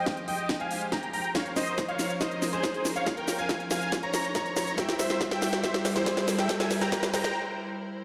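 Uplifting trance at 140 BPM, emotional and driving, this short build-up cut from a longer piece sets a huge, detuned supersaw melody up front over a boxy grand piano second line and floating, bowed string chords, all pumping with sidechain, while an overdriven techno kit with cracking snare and smooth hats drives a drum fill above a heavy background kick, a very quiet riser enters at 3.1 s, the chords move from Fmadd9 through Bbmadd9 to C7, a brief break arrives at 7.4 s, and a lush hall reverb fills the bare room.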